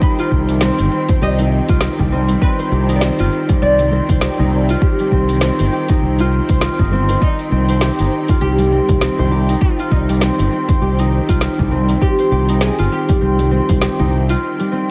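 This excerpt of earthy organic downtempo opens with a mellow, deep oud on the melody, trailed by digital delay. Around it sit smooth, vibrato-rich bowed string chords that pump with the sidechain, an up-front concert harp playing ringing arpeggios through delay, and a layered electronic kick with a deep house kit of woody snare, dark hats and shaker, all in C minor at 100 BPM with a 16th-note swing. A bright fretless electric bass with analog chorus and its own pumping enters at 0.3 s, very quiet congas join at 0.5 s, and the kick drops out at 13.8 s ahead of a brief break, all set in a light small-room reverb.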